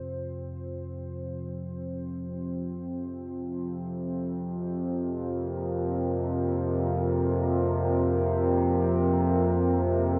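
Dark and desolate, this dark ambient drone drifts in free time, with an evolving, warbling analog drone in the low register and a deep, moody analog pad holding sustained chords above it, both treated with chorus and fading in together from the start through 10.2 seconds. The drone's vintage sawtooth and pulse-wave tones shift under pulse-width modulation, while the pad's detuned sawtooth and triangle layers carry a sub octave. Both sit up front in a dreamy mix soaked in cathedral reverb with a cassette-tape character, heard here as a short cut from a longer piece.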